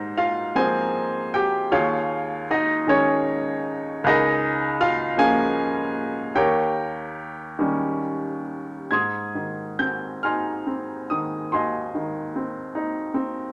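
Warm and calm, this classical passage cut from a longer piece features a solo upright piano with a clear, woody, natural tone placed up front, moving in a lyrical, rubato 6/8 through suspended and seventh-chord harmonies into a new section at 8.9 seconds, set in a moderate studio ambience.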